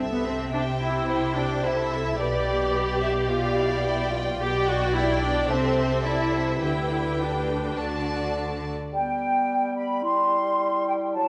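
Bowed strings open this graceful, cheerful classical-period orchestral passage at 108 BPM, with a rich, smooth violin section carrying the melody over a warm, intimate second violin line, lush up-front violas, distant cellos and even double basses, settling into G major before the strings fall away by 8.7 s and, at 8.9 s, an airy flute section, a dark clarinet and a mellow bassoon take over, the whole orchestra ringing in a reverberant scoring-stage space.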